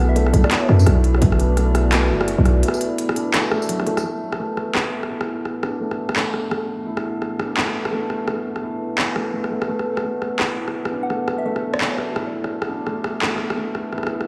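A dreamy, reverb-soaked mix opens this spacious, tense half-time drum and bass excerpt, where a growling 808-style bass drops in up front until 2.6 s and an electronic kick hits once at 1.2 s, while a crisp, tape-warm industrial kit of handclaps, hi-hat, rim click and tambourine drives on up front over a moody, grainy analog pad, intimate felt-muted upright piano arpeggios with audible action noise, an eerie metallic drone and brief phased synth bell melodies.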